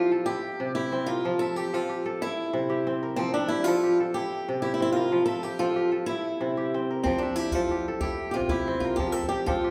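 Kora arpeggios and a picked swing-style acoustic guitar open together in this joyful West African string piece, a short cut from a longer performance in F major at 124 BPM in a straight 12/8. The guitar carries the melody with a boxy, up-front tone, while the kora fingerpicks ringing, crisp figures that span from low C3 up to E5. The harmony rocks steadily between C and F throughout. At 7.1 seconds a djembe joins, its tight, cracking strikes played with soft hands and tinged by metal rattles, sitting close but lower in the mix. A lush recital hall reverb surrounds the ensemble, giving the whole a resonant, churchlike glow.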